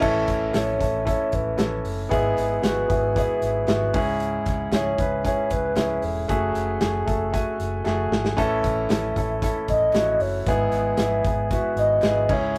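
Piano-driven pop with an earnest, bittersweet mood, this excerpt is cut from a longer piece and moves in a straight 4/4 over a chord cycle from A through E/G# and C#m to F#madd9 before returning. A clear concert grand piano carries the accompaniment up front, polished and intimate, with deep bass, long sustain and audible action noise. Underneath, a vintage muted fingered electric bass sounds dark, round and punchy, while a loose indie drum kit with a medium-tuned snare and tight kick fills a small, pumping room and plays a fill at 7.9 seconds. A hollow, woody synth lead resembling a clarinet enters at 0.6 seconds with the melody, its soft square and triangle tone blending with a noise layer, chorus and vibrato as it sits mellow in the background. A group handclap comes in slightly earlier, at 0.3 seconds, crisp yet very quiet and distant, as if from a large room. The whole take has a rough rehearsal-room character with tube saturation and a moderate booth ambience.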